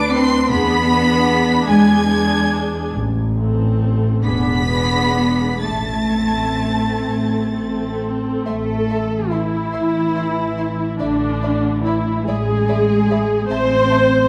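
Serene and warm, this slow romantic movement for string orchestra unfolds in A minor at 41-51 BPM in a rubato 6/8, and it is cut from a longer piece. A violin section carries the high melody with lush, expressive vibrato, set back at a distance, while a second violin section sings a woody, close line beneath it. The viola section sits up front with a focused, smooth-topped accompaniment, and the cello section supplies an even bass with light vibrato. The double bass section anchors the lowest register, close and up front. The three lower parts play through to the end, while the violins stop at 14.0 seconds. A moderate scoring-stage reverb and a dark production frame the harmony as it settles from E7 onto Am, then shifts at 8.5 seconds to a bare A5 before returning to Am.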